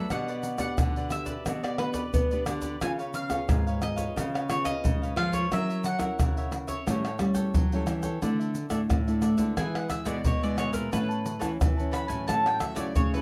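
Dark, warm production with moderate studio reverb frames this lively, joyful samba and choro, cut from a longer piece. A mandolin carries the melody with a woody, double-string tone, picked above a crisp cavaquinho and a bright, classical nylon-string guitar whose fingerpicked chords carry an audible finger squeak. A second, smaller nylon-string guitar is fingerpicked in the bass register. Egg shaker, tight surdo, pandeiro and tamborim come in at 0.1 s, struck with hard hands in a small-room sound that sits up front. The opening harmony moves through C#7, F#7 and A7 before a new section begins at 8.2 s, where the mandolin takes a solo over Dsus2, E, Aadd9 and F#m7/A.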